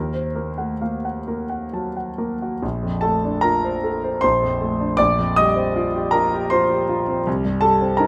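Impressionist classical solo piano in Bb major, hazy and luminous, moving in a rubato 3/4 between 64 and 82 BPM across this brief fragment of a longer piece. A warm concert grand plays alone from 0.0 to 8.1 s, reaching from deep bass notes at Bb1 up to Eb6, its opening Ebm6 colour giving way at 2.6 s to a glowing Bbmaj9 before drifting through suspended harmony toward a C7 chord. Close, detailed microphones and light reverb keep the piano intimate and up front, with its natural tone and the sound of its action clearly audible.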